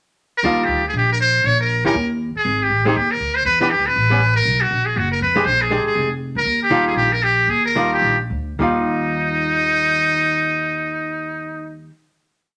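A roomy studio sound with moderate reverb frames this short, sophisticated small-group swing and bop piece in Eb major, moving at a brisk 203-240 BPM with a swung 4/4 feel before slowing from 6.5 to 8.6 seconds into a final Ebadd9 chord. Up front, a metal-muted trumpet plays a buzzy, brilliant melody built on hook-like motifs with light vibrato, while a dark, clean hollow-body archtop guitar adds compressed, syncopated comping in three- and four-note chord shapes. Underneath, a woody pizzicato upright bass holds a two-feel line through shifting harmonies such as Ebmaj9, Abmaj7(no3) and A9.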